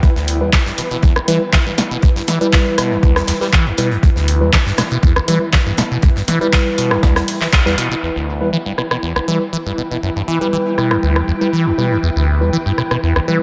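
Drenched in echo and a moderate spring reverb, this hypnotic, trippy acid house cut moves at 120 BPM in E minor, driven by a squelchy, resonant sawtooth acid bass riff up front, colored by phaser, tube saturation and dub echo. A thumpy, overdriven electronic kick and a punchy, tape-warm analog drum machine with claps, hats, rim clicks and snare share the foreground, while a gated 80s kit's airy hi-hat and fat snare sit in the background; the band hits an accent at 7.5 seconds, the kick drops out at 7.6 seconds and the gated kit at 8.0 seconds. Above them, a blurred, detuned granular cloud pad breathes with sidechain pumping, and a mellow tine electric piano adds clean stabs trailed by dub echo.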